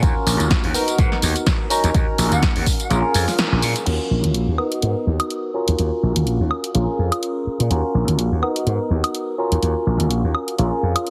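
This excerpt of filtered disco house opens with a groovy, funky band: a barky, clean tine electric piano running through a combo amp and a phaser, a gritty, growly overdriven slap bass, a punchy, tape-warm kick, and an analog drum machine playing snare, hi-hat, tambourine, woodblock and crash cymbal, with the hats, percussion and cymbals pumping to a sidechain. The piano and bass sit up front and pump as well, cycling through swung minor ninth and seventh chords. At 1.0 seconds a distant, airy concert flute drifts in behind the band with vibrato and expressive tonguing on a single high note, trailed by digital delay and softened by a low-pass filter. The kick drops out at 2.9 seconds, and a band accent lands shortly before the second section. From 3.9 seconds a filter sweep carries the music forward as a similar progression repeats, all wrapped in a moderate plate reverb and a heavily compressed, radio-like sound.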